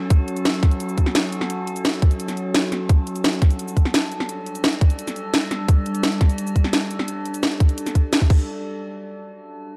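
A tight electronic kick sits up front in this mechanical, tense slice of dark technical drum and bass at 172 BPM, backed by a layered drum kit with a cracking snare, bright hats, shaker and crash cymbal, kick and kit both overdriven. Beneath them an eerie, metallic FM drone holds warbling sustained chords moving from F#m to Gsus2, its slow attack and long release colored by chorus, phaser, built-in reverb and sidechain pumping. Light digital ambience frames the dark production of this section cut from a longer piece, with the drums stopping at 8.4 seconds and the drone at 8.5.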